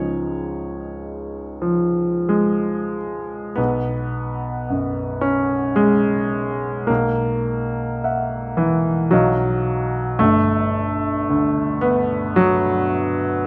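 A clear grand piano sits up front in a moderate recital hall, its long sustain blooming into a reverb tail of about 1.6 seconds. This is a brief cut from a longer impressionist solo piano piece in 3/4, moving slowly at 44-56 BPM with a freely breathing rubato. The mood is luminous and serene, with the piano playing alone across a span from G1 to F#5. It opens on a Dbadd9 sonority, then moves at 3.6 seconds into a longer second passage that drifts through Cb5, Esus2/B and Ebmadd9/Cb before settling on Gsus2 at 10.2 seconds. The open, suspended harmonies and the clear, present piano tone give the moment a floating, unhurried stillness.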